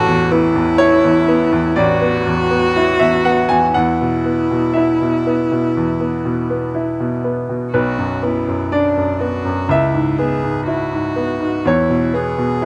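Neoclassical piano and strings in a melancholic, fragile mood, moving in a loose rubato, with a bright, brilliant grand piano of short sustain carrying the accompaniment up front while a single close, intimate cello plays a soft-attacked second line with light vibrato and an airy bow, heard dry in an open outdoor setting with little reverb.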